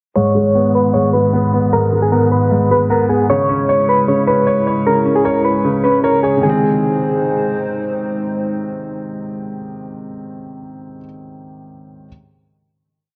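Dark, warm production with light reverb and a studio ambience gives this short hip hop and trap piece a menacing, shadowy mood. At 153 BPM in 4/4 with a half-time feel, it opens at 0.2 seconds with a breakdown under a filter sweep, moving from G#m to C#m before settling on a final G# chord at 6.4 seconds. Up front, soft electric-piano-like synth keys carry a gentle, round looping melody through chorus, tremolo, digital delay and a low-pass filter, repeated like a sampled loop until 7.6 seconds. A dark baby grand piano plays a patterned eighth-note arpeggio with long sustain and continues to 12.1 seconds. Beneath them, a warbly, detuned tape-like pad holds nostalgic, lo-fi sustained chords with a sub octave and its own reverb, tuned to A4 = 439 Hz along with the rest of the piece.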